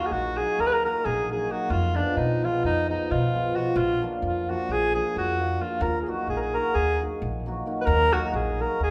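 Balkan folk in the manner of a wedding band, this bittersweet, virtuosic excerpt from a longer piece moves at a brisk 263 BPM in eighths in a straight 9/8, in Eb harmonic minor, with a clear, lightly vibratoed alto saxophone carrying the melody up front in a classical style while a hammered, shimmering cimbalom rings out the accompaniment and a woody, thumpy pizzicato upright bass on gut strings holds down the low end, all set in a roomy recital hall reverb as the harmony passes from Ebm through Fdim and Bb back to Ebm.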